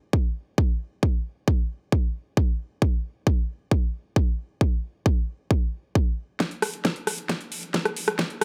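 Trance excerpt with a soaring, bittersweet mood, opening on a punchy, overdriven electronic kick drum that sits up front, high-pass filtered, in a dry, close space. At 6.4 seconds a big-room dance drum kit enters for a build-up and drum fill, bringing a huge, low-pass-filtered snare, rim clicks and metallic hi-hats that pump under sidechain, all layered and overdriven. The kick stops at 8.3 seconds, just before the kit ends.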